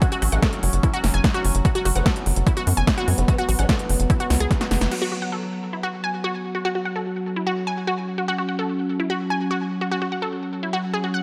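The recording sounds punchy and up front under a light reverb, a psychedelic trance excerpt with an alien, psychedelic mood in a straight 4/4 metre. An overdriven electronic kick drum hits hard from the start alongside a big-room dance drum kit with a punchy snare, crisp hi-hats and crash cymbal, both re-recorded in a large room and cutting out after a drum fill and band accent near 4.8 seconds. Underneath, a tight, nasal sequencer bass built from sawtooth and square waves drives a fast-attack filter pluck, while a very quiet formant-sweep wobble bass adds a detuned, compressed second line with chorus. A lush, warbling unison pluck carries the riff throughout, its bright, detuned vintage saws and noise layer pumping against the sidechain and trailing tape echo. Holding the harmony is an overtone-sweeping drone of resonant sustained chords with slow attack, chorus and built-in reverb, which together with the pluck continues alone after the drums and bass drop away at 4.9 seconds.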